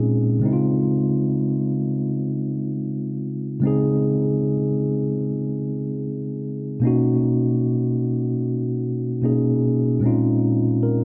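In a straight, unhurried 4/4, this tender, dreamy R&B fragment, cut from a longer piece, features a lone mellow tine electric piano, clean and up front, its built-in speaker tone colored by tape echo and a light reverb. Lush chords glide from Dbmaj7 to Cbmaj9 at 6.8 seconds and settle on Bbm11 at 10.0 seconds, spanning Bb2 to Bb4 across the 11-second solo.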